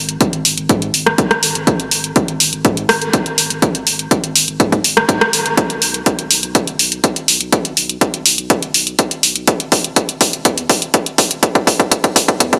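Emotional and bittersweet, this progressive house excerpt is one long build-up in a straight 4/4, where a punchy, overdriven electronic kick sits up front with a pop drum kit of hi-hat and rim click, a drum fill arriving from 5.6 seconds, while a deep, thick saturated sub bass with sidechain pumping stays in the background, all bathed in a huge ambient reverb.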